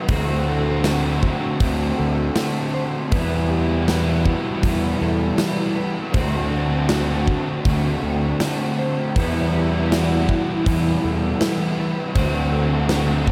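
Blissful and dreamy, this shoegaze and dream pop excerpt drifts at 80 BPM in D mixolydian, where an up-front hollow-body overdriven semi-hollow guitar riff with analog chorus and a biting overdriven guitar riff in the background with reverse reverb ride over a punchy, fuzz-soaked fingered electric bass and a big rock drum kit with a punchy kick and medium-tuned snare, while a dark, clean mellow electric guitar adds fingered arpeggios through analog chorus and delay, the chords swaying between D7 and Emadd9 in a mix drenched in huge ambient reverb.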